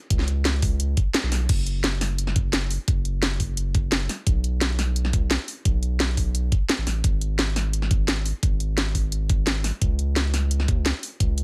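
A straight 4/4 groove at 173 BPM anchors this soulful, lush liquid drum and bass cut in F# minor, where an up-front knocking electronic kick and a layered kit of cracking snare, bright hats and crash cymbal play throughout alongside a deep, thick, saturated sine sub bass with a fast attack moving between F#1 and D#2, a full-band accent landing at 1.1 seconds, all in a dry, close sound.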